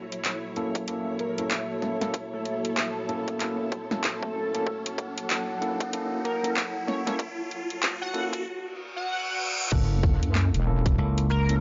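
Gritty and funky, this glitch hop excerpt moves at 95 BPM in 4/4 with a swung sixteenth feel over an F#7#9 chord, opening as a build-up where a moody analog pad with 12-bit sampler grit and sidechain pumping sits alongside a distant, lush bowed string section, a riser and reverse cymbal, and clean tine electric piano stabs with tape echo through a low-pass filter. A tight, layered electronic kick joins an overdriven, up-front kit of cracking snare, bright hats, handclaps, shaker and crash, while an edgy, tearing sync lead with vibrato and ensemble chorus carries the melody. At 9.7 seconds the drop hits with an impact and a heavy, saturated wobble bass, handing off at 11.0 seconds to a punchy slap bass note, all set in a dry, gritty hardware ambience.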